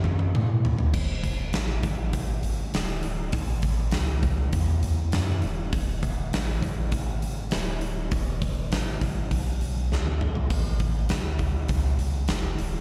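Raunchy and driving, this excerpt from a longer piece sits in blues rock power trio and southern rock territory, moving at 100 BPM in a straight 4/4 in E mixolydian. A huge arena drum kit opens with a fill over the first 0.9 seconds, its punchy kick, medium-tuned snare, toms, hi-hat, bright crash and splash cymbals standing up front with a pumping, hall-like room sound. Underneath, a deep sub bass with a round, sine-like tone and a fast attack holds sustained notes between D1 and A2, its character warm and mellow. The drums break into a second fill between 9.9 and 10.5 seconds before the groove carries on to the end. The whole performance comes across like a live gig heard through the venue's PA, with a light recital hall reverb around it.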